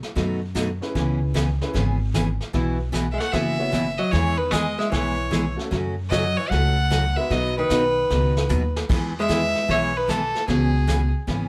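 Cheerful and down-home, this swinging country and western swing excerpt opens on a roomy, distant brush kit with dark cymbals, quickly joined by a bright, jumbo-bodied steel-string acoustic guitar with audible finger squeak, a thumpy gut-strung upright bass and a boxy upright piano. At 3.1 s a nasal, earthy fiddle takes the melody up front with light vibrato and plate reverb, while a dark, clean hollow-body archtop guitar carries a second line beneath it. A drum fill at 8.1 s marks the turn back toward E, all set in a moderate club ambience.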